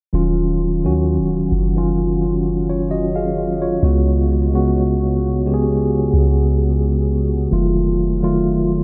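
A dreamy mix drenched in a huge ambient reverb, its highs rolled off above 7.6 kHz, frames this brief, sensual and moody slow R&B fragment cut from a longer piece. A mellow tine electric piano sits up front, clean and played through its built-in speakers, moving through Ebm9, Db7sus4 and F7b9 from 0.1 to 8.8 s. Alongside it, also up front, a soft 808-style bass adds deep, round, sine-like notes with a fast attack and dark decay.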